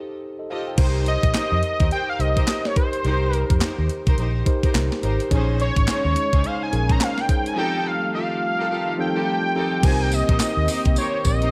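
A swung 16th-note groove at 106 BPM in 4/4 drives this slick, confident new jack swing excerpt, opening with a mellow tine electric piano over F9, joined at 0.5 seconds by lush bowed string stabs with vibrato and portamento, before a clean 12-bit drum machine with a thumpy kick, medium-tuned snare, handclaps, hi-hat, tambourine and crash arrives up front at 0.8 seconds alongside a dark, round, foam-muted fingered bass. The strings sit over the chords, while a thick, nasal, warbling unison lead carries the melody from 1.1 seconds. From 5.3 seconds a detuned sawtooth pad with a slow attack, a filter swell and chorus drifts in the background as the harmony moves through Cm7, Bbm11 and F9, all in a light reverb.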